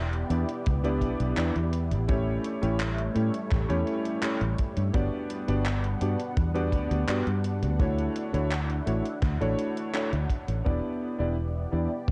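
Vaporwave at 84 BPM in E dorian, this nostalgic, woozy excerpt from a longer piece drifts through Em7, A7, Gmaj7 and Dmaj9 over a dark, round, foam-muted fingered electric bass with tube saturation and a tight acoustic kick drum, while a gated 80s digital drum machine adds handclaps and hi-hat in a large room until 10.6 seconds. A warm, vintage electric grand piano with a clangy bass register, analog chorus and tape echo sits up front, and a lush, thick, detuned unison pad with slow attack, chorus and phaser holds sustained chords throughout. The echo-heavy cassette-tape mix carries light reverb and studio ambience, with a band accent at 9.9 seconds just before the music returns to Em7 at 10.7 seconds.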